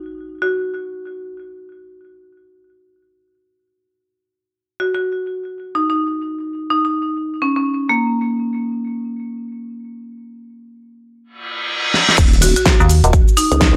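Aggressive and gritty, this bass house excerpt opens with a sparse marimba line played with hard mallets, its boxy, percussive tone sitting up front and trailed by tape echo as it drifts in and out over the first 12 seconds. A reverse cymbal and sub drop enter at 11.4 seconds, and a big-room dance kit with a huge snare, crash, hi-hat and shaker punches in with a fill just before the drop. At 12.2 seconds the track hits with an impact as a layered, punchy electronic kick anchors a vowel-sweep wobble bass whose nasal, resonant formant-filtered tone is thickened by chorus and pumped by the sidechain. A metallic FM bass cuts through briefly, its digital bite roughened by tube saturation, while the marimba returns for a final phrase over the Eb7(no3) drop. The drums carry studio reverb, and a light reverb sits over the mix.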